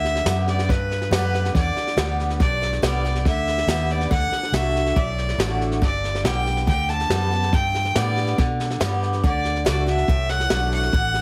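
A straight 4/4 pulse at 140 BPM drives this sunny, down-home slice of honky-tonk and classic country in G major, cut from a longer piece and running about 11.2 seconds. A vintage brush drum kit keeps time on hi-hat, kick and snare, its punchy kick and medium-tuned snare sitting mid-forward with a rolled-off top. Beneath it, a muted fingered electric bass sounds dark, round and foam-muted, amped and up front. A picked swing-style acoustic guitar fills in the accompaniment with bright, boxy fresh strings. Over the top, a single bowed fiddle carries the melody with an earthy, biting tone and light vibrato, a rich voice placed up front yet with a slightly distant air. The chords move from G to D at 4.1 seconds, back to G, and to D again at 9.2 seconds, all under light reverb and a heavily compressed, radio-style sound.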